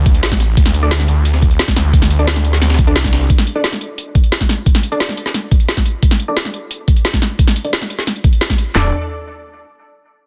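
A snarling, detuned saw bass with tube-saturated distortion and sidechain pumping opens this dark, futuristic drum and bass excerpt at 176 BPM, alongside a barely audible downlifter, before two up-front electronic kits arrive: one with a knocking kick, cracking overdriven snare, handclaps and toms, the other with a woody snare and metallic hats. Underneath, a very quiet, gritty sampler-style breakbeat re-recorded in a large room adds hi-hat and snare until 3.3 seconds, when the bass also drops out. From 0.8 seconds a bold orchestra-hit-like synth stab enters with a filter sweep, cassette-tape color and dub echo, over a dense, heavily limited mix in light reverb.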